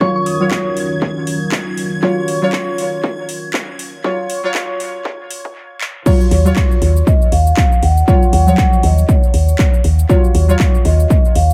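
A woody, round FM bass sits up front from 6.3 seconds, anchoring the drop of this warm, hypnotic deep house excerpt in a swung 4/4 groove. Before it arrives, a build-up with a filter sweep gathers a dark, moody analog pad, a silky, nasal string pad, and a brief flicker of a soft, warbling synth bell touched with phaser, vintage sampler grit and dub echo, all over a deep, full-bodied chord stab that pumps against the beat and echoes into the distance. A punchy, overdriven kick drum drives the whole passage, joined by a house kit of metallic hats, handclaps, shaker and crash cymbal, both sounding as if re-recorded in a large room, and the kit carries tape echo. A drum fill at 5.8 seconds leads into the drop, where a mellow vibraphone played with soft mallets, close and dry apart from its dub echo, carries the melody above the bass and stabs. The mix is echo-heavy with light digital ambience, resting on an Ebm9 chord.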